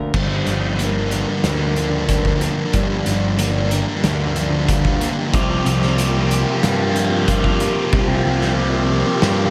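Cinematic and cathartic, this post-rock passage in G minor builds steadily at 92 BPM in a straight 4/4, cut from a longer piece. A sludgy distorted guitar riff sits up front, joined by a fuzzed, round picked bass and a loose indie drum kit whose punchy kick, dark cymbals and pumping room sound drive the build-up from 0.1 seconds. Behind them, a bright, twangy twelve-string electric guitar and a mellow vibraphone with soft mallets and slow motor vibrato trace arpeggios, both touched with slapback echo. A lush, very quiet bowed string section holds dark sustained chords underneath, moving from Gm7 to C7sus4. At 5.3 seconds a crunchy overdriven guitar joins with a phaser-treated riff, thickening the climb. The whole mix sits in a moderate concert hall reverb blended with small room ambience.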